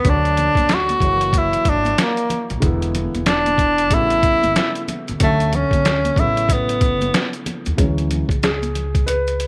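Jazz-hop with a cool, nocturnal mood, cut from a longer piece and set on a swung 4/4 groove. A breathy tenor saxophone carries the melody up front with a mellow, whispered, intimate tone, soft attack and vibrato, playing from the start until 7.5 seconds. Beneath it, a dark concert grand piano comps with deep, mellow bass, while a woody upright bass plucks thumpy gut-string lines. A gritty, compressed, pitched-down sampler-style drum kit sits up front with a thumpy kick, medium-tuned snare and hi-hat, and maracas and congas add soft-handed texture in the background. At 7.8 seconds the piano takes a brief solo over a Dmaj9#11 chord, all within light reverb and small room ambience.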